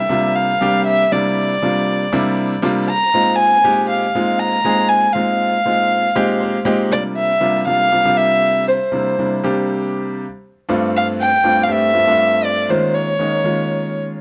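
Jazz in a straight 4/4 feel, soaring yet slick, taken from a longer piece. A dark-toned solo violin carries the melody from the start. It is bowed sul tasto with light vibrato and a soft attack, and it sits close and up front with a smooth top. A clear baby grand piano accompanies from 0.1 seconds, intimate and natural, with its action noise audible. The piano plays a brief fill at 6.2 seconds as the music moves into its second section, and the harmony circles through suspended ninth chords on C, B-flat, G and E-flat. The production is dark and warm, set in a moderate studio reverb that keeps both instruments near and personal.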